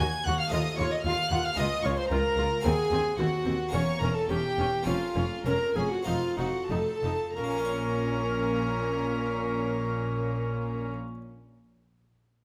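A hollow, airy tenor recorder with a breathy chiff leads this driving, stormy fragment of a baroque-style concerto movement, joined on the melody by a rich, gut-strung violin section singing higher with light vibrato, while a second violin section carries a background line, a dark, distant viola section and a brilliant French-style harpsichord fill in the accompaniment, and reedy cello and double bass sections anchor the bass as the music slows between 1.6 and 7.4 seconds in a moderate recital-hall reverb.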